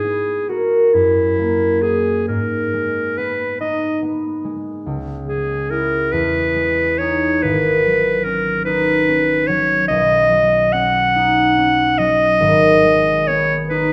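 Impressionist classical duo for clarinet and harp in G# minor, a hazy, mysterious piece at a slow 47 BPM in 6/8, moving with uneven beats and free rubato across this short excerpt cut from a longer work. A bright, up-front solo clarinet carries the melody from E4 to F#5 in classical style, while the mellow concert harp, thumb-plucked and ringing, spreads its accompaniment from deep G#1 up to A#4 through colorful chords such as G#m9, C#m6, Emaj7 and Badd9 before settling on G#m at 12.4 seconds. Both instruments sit close in a reverberant recital hall, which lends the sound a soft halo.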